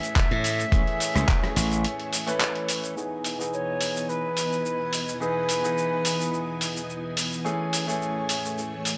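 A loosely swung 107 BPM nu-disco groove in E major opens this sunny, groovy fragment, with a gritty, overdriven sampler-style kit of cabasa, handclaps, hi-hat and rim click running throughout, while a thumpy electronic kick and a punchy, glassy slap bass sit briefly up front before falling away, the bass dropping out for a break at 1.8 s. Meanwhile a brilliant grand piano pumps under tape echo and a low-pass filter, and from 3.0 s a filter sweep moves across it. A lush, vintage string machine holds chorused sawtooth chords from Amaj7 to Emaj7, and a distant, airy flute with a crisp attack sings an echoing melody over a dry, hardware-coloured mix with light digital ambience.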